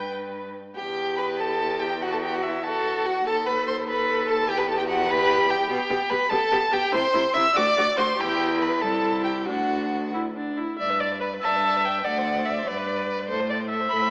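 A quick classical-period movement for string quartet, this lively, graceful passage is cut from a longer piece and moves at 96 beats per minute in 6/8 with a rubato feel. It begins in E minor and turns toward G major at 5.7 s, with tuning set slightly high at A4 = 442 Hz. The first violin carries the melody up front with a focused, vibrato-rich tone and a smooth top, reaching as high as E6, while the second violin adds a secondary line and the viola fills in the accompaniment, both bowed with a rich, even sound. Underneath, a single cello holds the bass with a clear, close tone. The whole quartet plays throughout the 14.1 seconds, shifting into a new section at 10.8 s. A moderate scoring-stage reverb gives the strings space, yet the overall sound is filtered to resemble an AM radio broadcast.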